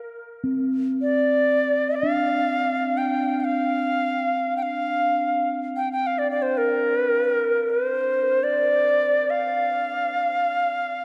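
A close-miked, airy Native American-style cedar flute with vibrato, a soft attack and tape echo carries the melody from 1.0 s in this calm, spacious world meditation excerpt in free time, floating up front over a mellow, metallic bronze singing bowl whose slow-beating ring, struck with a felt mallet, sounds from 0.4 s to 9.4 s within a dark production and a long cathedral reverb.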